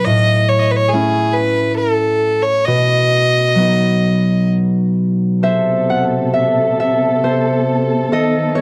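A dry, close 1970s-style studio sound frames this wistful, pastoral Celtic slow air, moving in a free rubato 3/4 around 68 BPM. A clear, earthy fiddle with light vibrato carries the melody up front over ringing, fingerpicked concert harp, then falls away at 4.5 s. From 5.4 s the harp takes the lead while a dark, woody studio string section adds lush, smooth-topped sustained chords, moving from Amadd9 to a closing B7 as the fragment cuts off.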